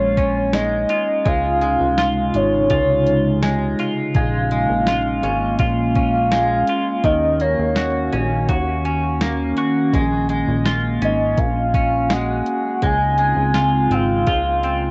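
Hazy and melancholic, this excerpt of dream pop drifts at 83 BPM in Bb minor, with a soft octave-layered synth lead carrying a round, dark melody through chorus, tremolo and tape echo over a warbling, wave-folded pad that holds sustained chords. A clean, twangy electric guitar picks arpeggios through analog chorus and tape echo, while a plucky sawtooth bass with tube saturation and a detuned 8-bit drum machine with a thumpy kick, entering at 0.2 seconds, anchor the groove. The chords move from Bbm7 through Dbmaj7 and Ebm7, and the whole excerpt sits in a small, wet booth ambience with the dull, lo-fi haze of a home cassette recording.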